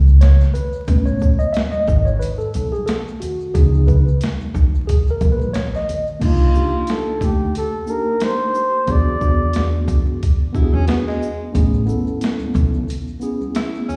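Woody pizzicato upright bass opens this smoky, mellow hip hop excerpt in a swung jazz-hop groove at 90 BPM, joined almost at once by a clean tine electric piano soloing through plate reverb, gritty overdriven boom bap drums with a thumpy kick and high-tuned snare, and close, bright congas and maracas; a breathy, whispered flugelhorn carries the melody from 6.2 s, a subtoned tenor saxophone with scooped notes enters at 10.5 s, the bass stops at 12.8 s, and the mix sounds like a live gig through a venue PA with vinyl crackle.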